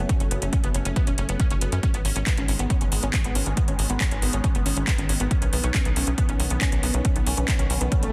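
A dense, heavily limited modern master with little reverb carries this short, emotional and driving uplifting trance excerpt, as a lush, detuned supersaw pad holds sustained chords through a phaser, low-pass filter sweep and sidechain pumping while a bright, wave-folded unison pluck spins arpeggios with subtle chorus and tape echo. Underneath, a tight, nasal sequencer bass pumps over a punchy, overdriven electronic kick, joined by an overdriven house kit of handclaps and metallic hi-hats. The chords move from F#m to G#m to Badd9, and an electronic swell enters at 8.0 seconds as the excerpt cuts off.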